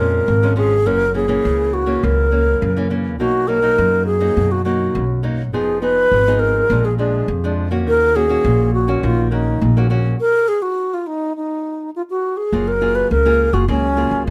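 A straight 4/4 samba-choro groove at 103 BPM carries this nostalgic, bittersweet fragment in Eb minor, cut from a longer piece, with a stop falling between 10.2 and 12.5 seconds before a new section opens on an F#maj9. Up front, a reedy, airy alto flute sings the tongued melody with vibrato, while a pizzicato upright bass with steel strings sits alongside it, woody and bright. A small, warm nylon-string guitar is fingerpicked underneath through seventh-chord harmony, all set in light reverb.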